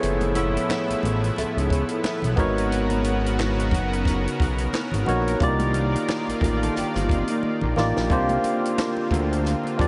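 A bright, barky tine electric piano sits up front in this soulful, introspective neo-soul R&B excerpt, joined by a fat, saturated analog bass, a lush, warbling unison pad and a dry, compact cocktail drum kit with handclaps, while very quiet damped congas sit beneath, a distant saxophone section stabs briefly at 0.4 seconds, a dark, fingered electric guitar appears in the background through analog chorus and diffuse delay, and a drum fill at 7.4 seconds leads into a C9sus4 chord, in a dreamy mix soaked in huge reverb.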